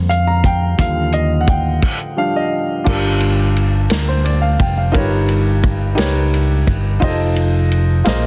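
Dense, heavily limited modern sound with light reverb frames this reverent, uplifting slow gospel excerpt in 6/8 at 58 BPM in Eb major, where an intimate grand piano with audible action noise moves through Bb7, Ebmaj9, Gm7, Eb7b13/G and F7, a dark, round fingered electric bass sits up front, and a dry, mid-forward soul drum kit with a tight kick, medium-tuned snare, hi-hat, ride and crash plays throughout, while the piano takes the spotlight for the opening 2.9 seconds, broken by a stop at 1.8 seconds.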